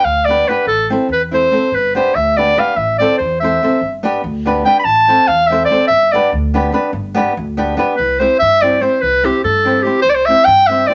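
A moderately reverberant studio sound with a soft top end frames this festive, wild cut from a longer Balkan wedding-band folk piece in 5/8 at 288 BPM in eighths, where a clear, classical-style clarinet solos up front from 0.0 to 8.0 s over fingerpicked acoustic flamenco guitar, also up front, and a woody pizzicato upright bass with steel strings, the harmony rocking between G and Am before moving to C at 8.0 s.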